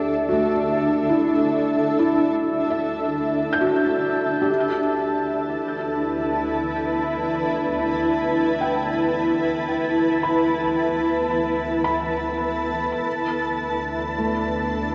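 A bright, cloudy granular pad sits up front in this peaceful, serene ambient piece, holding sustained chords that blur and evolve through slow attacks, long releases, shimmer reverb and its own built-in reverb. Beneath it, a felt-muted upright piano plays soft arpeggios with a dark, intimate tone, its thick felt and audible action noise kept natural while delay and shimmer reverb trail each note. Far in the background, a bowed double bass section fades in across the whole span, holding a low D with expressive vibrato and a gentle, ensemble warmth. The harmony drifts from Dsus4 to Em/D at 4.5 seconds and settles on D5 at 13.1 seconds, in a straight, unhurried 4/4. A lush hall reverb and a worn, warbling old cassette tape with wavering pitch drift give the whole recording a hazy, aged glow, and the passage is cut from a longer piece.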